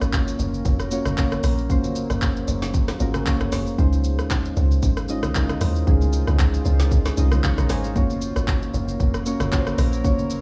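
Dry and close, with only a small room around it, this soulful amapiano passage rests on an up-front deep house kit whose deep kick, woody snare, handclaps, rim click, hi-hat and shaker carry a tape-tinged, layered electronic sheen over a lightly swung 16th-note feel. A punchy, percussive log drum bass with a dark, fast-decaying attack sits beneath soft, round electric-piano-like synth keys with chorus and a filter sweep, moving from Gbmaj7 to Dbmaj9 at 3.8 seconds and back at 8.0 seconds. In the background a moody, detuned sawtooth pad with chorus, reverb and sidechain pumping sustains the chords, while very quiet, distant low-tuned congas played with soft hands add a warm acoustic touch.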